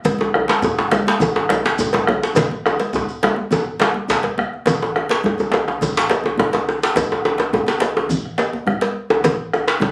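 West African traditional drum ensemble music, driving and earthy, with a straight 4/4 pulse carried by hand drums and a bell. Two djembes shape the texture: one tight and cracking, compressed and saturated up front, and another deep, struck with hard hands and sitting further back with its own compression and saturation. Close, dry congas with a thick-skinned, medium-tuned body fill the middle, while a dark bombo anchors the low end in the background and a metallic cowbell sits close yet in the background. A grainy, mellow shekere sounds distant, as if heard across a large room. A drum fill runs from 2.4 to 4.7 seconds before the same section repeats, and the whole passage, cut from a longer piece, carries the small-room ambience of a phone recording in the space, with added studio reverb and compression.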